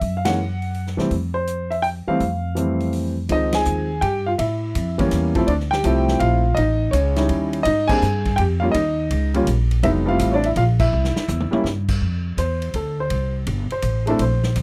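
Playful and warm, this fragment of a swinging jazz piano trio in 3/4 at 165 BPM pairs an intimate, up-front concert grand carrying the melody, its action noise audible, with a woody, thumpy pizzicato upright bass on gut strings and a big-band drum kit with a boomy kick, all in a dry, close 1970s-style studio sound, as band accents punctuate the groove, a drum fill arrives at 10.9 seconds and the piano takes a solo from 12.0 seconds.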